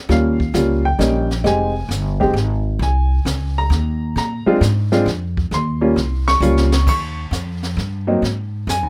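Dry and close, this cut from a longer piece is relaxed, playful small-group swing and bop jazz in 3/4 at 133 BPM in Eb mixolydian, with an intimate baby grand piano up front accompanying over Eb7, Fm7 and Bb7 changes with audible action noise and short sustain, a woody pizzicato upright bass on steel strings beside it, and a quieter brushed drum kit with dark cymbals, a high-tuned snare and a boomy kick that plays a fill at 6.4 seconds.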